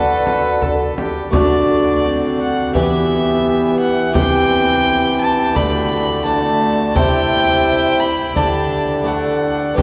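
Bathed in a wet cathedral reverb and heard from further back in the room, this excerpt of a courtly, festive Renaissance-style consort dance at 85 BPM in 4/4 places a pure, chiffy alto recorder melody in the background while a nasal, gut-string violin carries the second line up front, with a brilliant, close-miked harpsichord and a rich, reedy viola in accompaniment, a warm, lightly vibrato bassoon on the bass, and a deep frame drum played with hard hands entering at 0.3 s.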